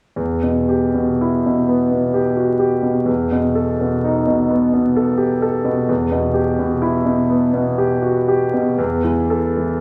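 This is a romantic classical nocturne for solo piano, a short portion cut from a longer piece, and its mood is mournful and yearning. A concert grand carries it alone from 0.2 to 9.8 seconds, its clear, natural tone sitting up front with a deep bass that reaches down to E2 while the upper line stays at or under A4. The phrasing is rubato over a 12/8 metre, so the pulse breathes and stretches rather than marching evenly. Slow harmonic shifts give the passage its ache, moving from Em to B7 over an E bass, back to Em, and settling on an open A5 chord above E near 8.8 seconds. A lush recital hall reverb lends the instrument a lingering halo, while a vinyl crackle adds a worn, nostalgic patina.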